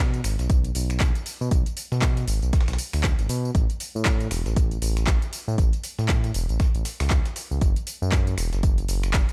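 Moody, late-night deep house at 118 BPM in B dorian with a swung 16th feel, where a smooth, mellow sawtooth-and-triangle synth bass pumps up front from the start, a deep-house kit of finger snaps, handclaps, tambourine and metallic hats adds overdriven bite, a gritty, tape-toned breakbeat kit of hi-hat and snare sits very quiet underneath from 0.2 seconds, and a deep, overdriven electronic kick punches up front from 0.5 seconds, all in a dry mix cut from a longer piece.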